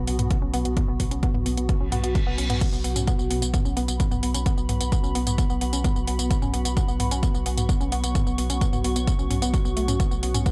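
A punchy electronic kick sits up front from 0.3 seconds, driving this relentless, industrial peak-time techno excerpt at 130 BPM in a straight 4/4. Beneath it, a deep, thick saturated sub bass with overdrive, a low-pass filter and sidechain pumping holds a low B throughout. A layered, overdriven techno kit of crash cymbal, hi-hat, tambourine and toms pumps against the kick, while a woody, wave-folded pluck riff with chorus and tape echo plays a mellow, percussive figure in the middle register. A blurred, cloudy granular pad drifts above with built-in reverb, and a very quiet, tense swarming drone is heard only until 2.7 seconds. A short electronic reverse cymbal builds into the drop at 2.6 seconds, which carries the rest of the passage in a digital ambience.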